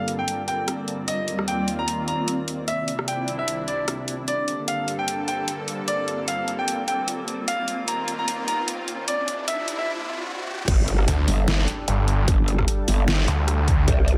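A clear, polished grand piano carries the melody over a lush, pumping supersaw pad and a cloudy, evolving granular pad, with a deep-snared dubstep kit in front, in this aggressive, heavy G minor wobble dubstep build-up at 150 BPM in a swung half-time feel. A filter sweep moves across the supersaw pad, and a background riser enters at 6.7 seconds before a brief break when the piano stops at 9.9 seconds. At 10.7 seconds the drop hits with an impact, a punchy kick and an overdriven, wobbling growl bass with chorus. A snarling, bright, distorted sawtooth bass joins at 11.1 seconds, closing the excerpt on a heavy, saturated low end.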